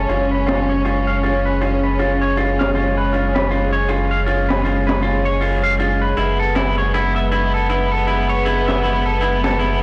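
A melancholic, dark trip hop excerpt opens with sustained, reedy string chords and a bright, twangy clean electric guitar playing arpeggios, both carrying 12-bit sampler grit and filter sweeps, with tape echo on the guitar. Beneath them sit a round, up-front sub bass and a nasal, string-like drone in the background. A crunchy breakbeat kit of swung hi-hat and high-tuned snare sits low in the mix from 0.1 seconds as the harmony moves from C#7/F# to F#m7 at 6.2 seconds, all within a blown-out, overdriven recording with vinyl crackle and a small, lightly reverberant room.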